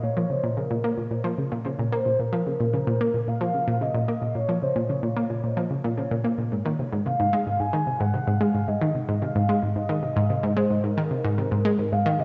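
Awash in the echo chamber's wet reverb, this hypnotic, expansive excerpt of sequencer-driven space music at 111 BPM in Bb minor sets an up-front, round, detuned analog pluck riff against a mellow, horn-like synth lead whose vintage, warbling sawtooth tone carries a soft-attack melody with vibrato, both parts washed in chorus and analog delay over a shift from Bbm to Ab at 6.5 seconds.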